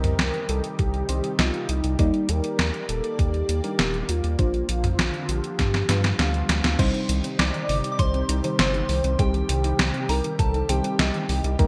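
A straight, driving four-beat pulse comes from an up-front, tape-warmed 8-bit drum machine with gated-reverb snare, crash, hi-hat and toms, joined at 0.8 s by a thumpy electronic kick, with a drum fill leading into the second half of this cinematic synthwave fragment. A round, deep analog bass with tube saturation anchors a thick, detuned unison pad that pumps against the beat, while a mellow, warbling FM electric piano adds stabs and a velvety, vibrato-touched lead sings the melody. At 6.8 s a tine-like synth pluck starts arpeggios in the background, and at 7.4 s a pure, gentle synth bell adds a high second line, all set in a lush hall with bright 1980s-style digital polish.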